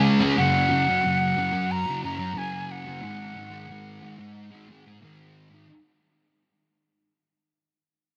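Blissful and hazy, this short rock fragment sets a dark, double-tracked fuzz guitar up front, its picked riff thickened by distortion and analog chorus and running until 5.7 s. Above it, a silver concert flute carries an airy melody with vibrato, a crisp attack and rolled-off highs before dropping out at 4.7 s. A huge ambient reverb with a long tail wraps both parts while the whole piece fades out, the harmony moving from Gb5 to Ab5 at 3.0 s.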